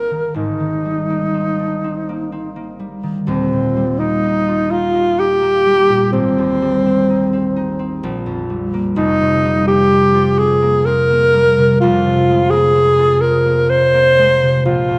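A mellow alto saxophone sings an up-front classical-style melody with vibrato over a bright, ringing, fingerpicked concert harp from the opening moment of this hazy, mysterious impressionist duo fragment, its rubato triple-metre phrases drifting through chords such as Cm9/Ab, Abmaj7 and Fsus24 inside a moderate concert hall reverb.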